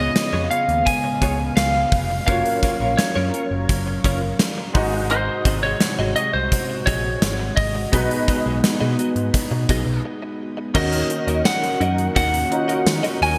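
Bright, polished 1980s-style digital production bathes this moody, dramatic pop fragment in plate reverb, with a twangy, slightly broken-up lead guitar carrying the melody over a clear concert grand piano, a shimmering chorused pulse-width pad, a clean direct-recorded electric guitar riff, a round, foam-muted picked bass and an up-front gated 80s drum kit with tambourine, until a break at 10.0 seconds gives way to dark, detuned synth brass stabs from 10.8 seconds.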